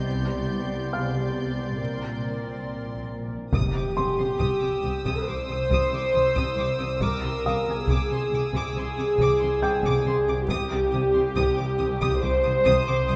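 An eerie, ominous stretch of suspense film score opens on a swarming, detuned drone with its own built-in reverb, low sul tasto viola and cello sections, and a warm grand piano adding short-sustain notes high above, all moving at 69 BPM in 4/4. A dark, woody violin section carries the melody from 0.1 seconds, lush with vibrato yet distant, while a second violin section adds a pure, floating high texture until 10.0 seconds. The viola section sits up front with a smooth, soft-attack tone, and the cellos stay intimate in the background. A dark double bass section joins at 1.8 seconds, deepening the low end over a Bbadd9 chord. At 3.5 seconds the music settles into C minor as a huge, bright impact hits and a close, dry taiko ensemble with hard sticks enters in the background, while the harmony moves through Ddim/C before returning to Cm. A moderate scoring-stage reverb wraps the ensemble in a dim, softened sound, and the passage is cut from a longer piece.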